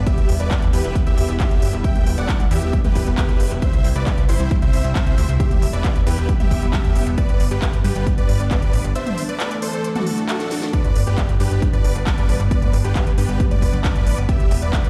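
A driving straight 4/4 pulse at 135 BPM, carried by an overdriven, up-front electronic kick and a techno kit of cracking snare, smooth hi-hats, handclaps and toms, propels this soaring, euphoric uplifting trance excerpt in G major, where a punchy, funky analog bass with a detuned filter pluck and a huge, compressed supersaw lead with vibrato and dub echo pump against the sidechain over a lush, bright pad with chorus and phaser in the background, moving from Em through C, G and Dsus2, with a break at 9.0 seconds and a drum fill at 10.4 seconds before the music returns to G.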